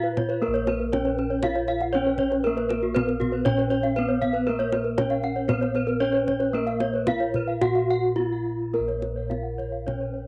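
Three bronze gamelan-type metallophones in paired tuning ring out from the first moment of this hypnotic, shimmering Balinese gamelan excerpt: an up-front horn-mallet melody sits in a boxy small room, a bright horn-mallet arpeggio part carries tape echo, and a dry, full wooden-mallet arpeggio part sounds close-miked, each colored by cassette tape, over round, mellow bossed gongs struck with padded beaters in the bass, while a tight kendang played with hard hands joins at 0.2 seconds, the whole home cassette recording framed by a modest small-room reverb.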